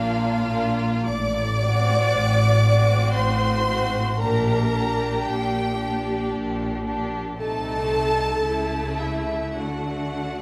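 In a rubato three-four, this solemn, melancholic slow romantic movement for string orchestra, cut from a longer piece, sets a bright, focused violin melody high above a smooth, even second violin line, a rich, close viola accompaniment, and a clear cello and lush double bass foundation, all bowed with vibrato and captured by detailed microphones in a moderate scoring-stage reverb.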